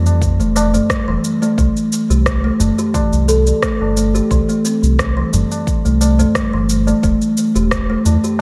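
A dry mix with little reverb frames this short cut from a longer organic downtempo piece, mystical and hypnotic in mood, tuned to A4 = 438 Hz and set in 4/4 with a light swing on the sixteenths. A round analog bass built from sawtooth and sine tones sits up front, dark and sustained with a fast attack, its low notes pumping under sidechain compression. From 0.4 s a woody kalimba plays airy, hollow-boxed arpeggios, thumb-plucked and ringing, shaded by a low-pass filter and echoed by digital delay. Underneath, a deep electronic kick and an electronic shaker and rim click carry the roomy sound of being re-recorded in a large space, while a high-tuned acoustic tabla rings close. The harmony moves from F to C at 1.6 s and settles on E minor at 7.0 s.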